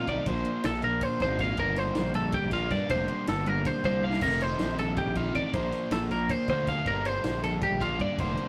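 A twelve-string electric guitar opens with bright, twangy, up-front arpeggios over a double-tracked overdriven guitar riff and a growly fuzz bass, setting a restless, intricate math rock and midwest emo mood in 7/8 as chords such as Bbadd9, Gm11 and F7sus4 cycle through. A compact cocktail drum kit joins at 0.1 seconds with a punchy kick, high-tuned snare and dark cymbals, throwing in a fill at 3.9 seconds. This short cut from a longer piece carries a rough rehearsal-room character, with tube saturation and a small, wet booth ambience.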